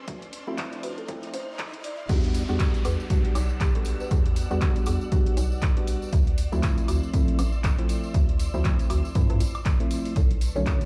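Moody and late-night, this deep house cut at 119 BPM in E minor rides a swung 16th-note groove, with an up-front punchy kick, a hollow, bouncy FM bass and an analog drum machine of handclaps, hi-hat, woodblock and crash cymbal, all set in a big, reverberant room with vinyl crackle. A riser and downlifter build toward the drop at 2.1 s, where a jingly tambourine enters, while silky, warbling string-machine chords pump with sidechain and a mellow organ stab, treated with chorus, phaser and delay, adds short percussive hits. A woody marimba with soft mallets, gritty from a 12-bit sampler and trailed by dub echo, carries a background melody that stops at 5.5 s and returns at 10.2 s.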